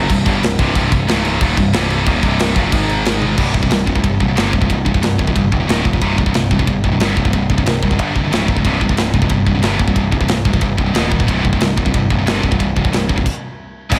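Heavy metal at 182 BPM in a straight 4/4, this dark, epic passage is cut from a longer piece and opens in C minor before shifting to C phrygian at 3.4 seconds. A scooped, high-gain guitar carries the riff, bright and double-tracked with heavy distortion, built on power chords around C with turns to Db, Eb, G and Ab. Beneath it, an overdriven picked electric bass adds a growly low end, while a tight metal drum kit enters at 0.1 seconds with kick, snare, toms, ride and crash, its sound saturated and gritty with a rolled-off top. A drum fill at 3.2 seconds leads into the phrygian section, and the band cuts to a sudden stop at 13.3 seconds. Guitar and drums sit up front, and a lush hall reverb gives the whole mix a big arena sound.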